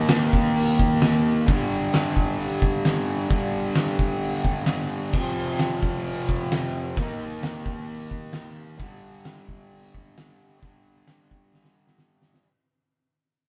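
Fuzz guitar picks out a gritty, swaggering riff from the first instant of this short garage rock excerpt, doubled and pushed up front. It sits in G minor at 131 BPM with a straight 4/4 feel, the riff ranging from F2 to Eb4 and moving through chords of Eb5, G5 and F5. An oversized, low-tuned drum kit drives alongside it with a fat snare, punchy kick, hi-hat and crash cymbal, its sound blooming in a bright stone room that pumps around the hits. A grainy tube shaker sits in the background, adding a bright edge from the back of the live room. The band plays together in one space with light reverb, the whole passage fading out across its length while the drums break into a fill from 11.5 to 12.5 seconds.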